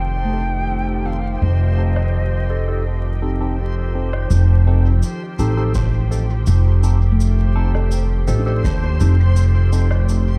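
Ambient dub at 83 BPM in 4/4, this hazy, peaceful fragment of a longer piece sits in F mixolydian over an opening F9 chord, wrapped in a dark production with small room ambience and vinyl crackle. A woody, growly pizzicato upright bass sits up front with tube saturation, while a soft organ-like pad holds sustained chords through ensemble chorus, reverb and vintage 12-bit sampler grit. A mellow silver flute with expressive vibrato offers a brief, distant melody drenched in dub echo before ending at 3.6 seconds. A ringing stainless-steel handpan plays meditative arpeggios in the background under a filter sweep, drops out and returns at 7.1 seconds, as a bright, clean tine electric piano adds stabs through phaser, low-pass filter and dub echo. A reversed, dreamy, granular texture swells on a single high note. Distant woodblock, cabasa and rim click arrive at 2.0 seconds with echo, and a dry, deep analog kick drum joins between 5.8 and 8.8 seconds.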